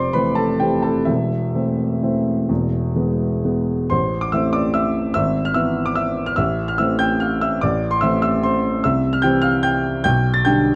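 The recording has a dark, warm character, with a moderate large-studio reverb that gives the sound a sense of space. It is a short classical piano waltz in triple time, cut from a longer piece, with an elegant, nostalgic mood and a flexible, rubato feel. A baby grand piano plays alone throughout, natural in tone and up front, its long sustain letting notes ring across a range from E1 to A6. The harmony opens on Fmaj7 and moves through Am/E to E before a new section begins on Am at 3.9 seconds, passing through E/G# and back to Am. From there the chords move to C and settle on G/B at 10.0 seconds, and the passage breaks off at 10.8 seconds.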